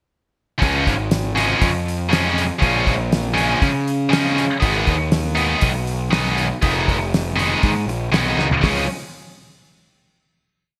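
A high-gain distorted guitar leads this short, complete indie rock piece, its bright, double-tracked riff of short syncopated chords sitting up front from 0.6 seconds. The mood is jangly and carefree, moving at 120 BPM in a straight 4/4 in Db mixolydian, with the harmony shifting from Db to Abm and back to Db for a final chord at 8.6 seconds. Beneath it, a fuzz-laden picked electric bass, overdriven and up front, stays locked to the kick drum. The cloth-damped drum kit is dry, dark and thuddy, with a fat snare, tight kick and rolled-off top, treated with gated reverb and driving a big rock groove before a fill at 8.4 seconds. A moderate plate reverb and small room ambience frame the bright 1980s-style digital production.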